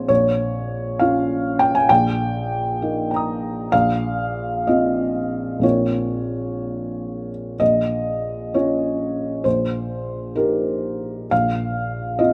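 A rough home demo sound surrounds a felt-muted upright piano, placed up front and softened by a light, small-room reverb that keeps it close and intimate. This is neoclassical minimalist piano in 6/8, moving at a slow, rubato 60-68 BPM counted in dotted quarters, with a wistful, melancholic mood. The piano plays solo across the whole 12.3 seconds, spanning Bb1 to Eb6, its tone soft and mellow, with the action noise of the instrument clearly audible beneath the notes. The harmony rests on Bb in the bass while the chords above move from Db/Bb to Eb/Bb to F5/Bb, and the same sequence begins again at 7.6 seconds. Tuned slightly above standard pitch, at A4 = 441 Hz, the passage is cut from a longer piece and stops mid-thought on the returning F5/Bb.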